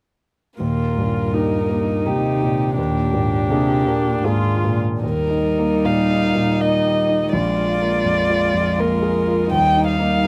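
At 0.6 seconds a piano quartet enters together in a slow, lyrical and tender romantic movement in Eb major, at 81 BPM in 3/4 with uneven, rubato beats. A dark, woody violin carries the melody up front with vibrato and sul tasto bowing. An intimate cello with an airy bow sings a second line beneath it, while a soft-attack viola and a concert grand piano with deep bass supply the accompaniment. The close, detailed sound with little reverb follows a simple Eb to Bb7 harmony, moving into a second section at 5.0 seconds in this brief cut from a longer piece.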